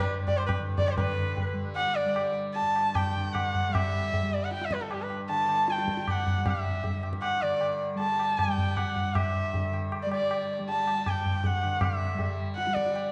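This Hindustani classical excerpt in raga bilaval on G has a devotional, serene mood, moving in 7/4 at 155 BPM with a straight feel and gradually speeding up over its 13.1 seconds, tuned to A4 = 441 Hz. A single bowed sarangi carries the melody up front between G4 and A5, its nasal, boxy voice shaped by light vibrato, soft attacks and expressive portamento glides, with sympathetic strings ringing beneath. A softly plucked tanpura sustains a buzzing, shimmering drone from G2 to G3 throughout, sitting lower in the mix. The tabla enters at 0.3 seconds, high-tuned with a short ring and a close, small-room presence that places it up front alongside the sarangi. The whole recording sits in a wet scoring-stage reverb with a 1.5-second decay, and its high end tops out at 10.5 kHz.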